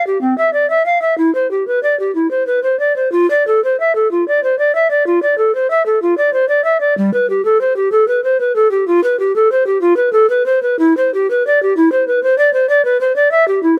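Classical baroque-style fantasia in C major for unaccompanied bass recorder, radiant and serene, unfolding in a rubato 12/8 at 63 BPM (dotted quarters) with the instrument up front, its airy, mellow, hollow wooden tone marked by a crisp, chiffing attack and vibrato, spanning G3 to F5 under light reverb and close, detailed microphones across this 13.8-second extract from a longer piece, tuned to A4 = 436 Hz.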